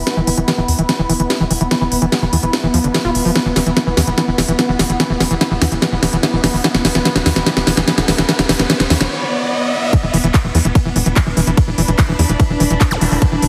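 A straight 4/4 pulse at 146 BPM drives this alien, psychedelic trance excerpt, where a tight, punchy sequencer bass and a squelchy, gritty acid bass riff with tape saturation and digital delay run under a swarming, detuned drone and a nostalgic, lo-fi pad that warbles in the background, both with phaser and sidechain pumping. A techno kit of cracking snare, smooth hats, ride and handclaps plays a fill through the build-up as filter sweeps move across the acid bass and drone, with a background riser from 5.7 s to 9.9 s and a brief break at 9.1 s, before a heavy, up-front electronic kick drops in at 9.9 s, all set in a lush hall with a heavily compressed, radio-like sound.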